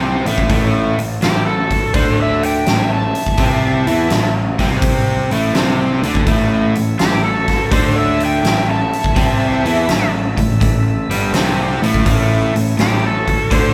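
A bright, overdriven slide guitar carries the melody from 1.2 seconds in this swaggering, raunchy blues rock and southern rock power-trio excerpt, set at 83 BPM in 4/4 with a swung eighth-note feel. Beneath it, a crunchy, double-tracked electric guitar plays the riff up front, joined by a punchy, fuzz-laden picked bass. A huge arena drum kit enters at 0.3 seconds with a fat snare, a punchy kick and hi-hat, sounding natural and roomy. A dark, smooth lead guitar adds a second line in the background. From 6.3 seconds, a very quiet, gritty tonewheel organ holds thick sustained chords through a slow rotary speaker. The band plays live in one room with light reverb.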